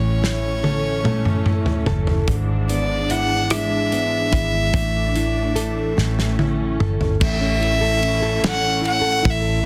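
In a swaying six-eight lilt, this tender pop ballad excerpt places an airy, sul tasto solo violin up front over fingerpicked classical nylon-string guitar, a lush bed of bowed studio strings with vibrato and a soft attack, and a dark, round foam-muted electric bass, while a loose small-room drum kit with softly clipped kick and snare enters at 0.2 seconds and plays fills from 0.0 to 2.3 seconds and 6.0 to 7.2 seconds, set in light reverb and a dense, heavily limited modern master.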